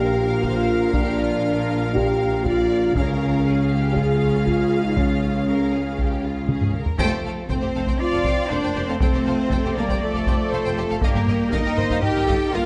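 Triumphant and heroic, this cinematic, epic orchestral film score excerpt strides at 119 BPM in F mixolydian. A backgrounded, richly bowed violin section carries the melody over a bright, close second violin line and clear, intense violas, while dark, distant French horns hold sustained chords. Smooth cellos, lush background double basses and a mellow, close-miked tuba anchor the bass through Bb, Db, Fadd9 and Eb/G. A taiko ensemble struck with hard sticks enters at 0.4 s and drives a fill into a full-band accent at 7.0 s, all set in a moderate scoring-stage reverb.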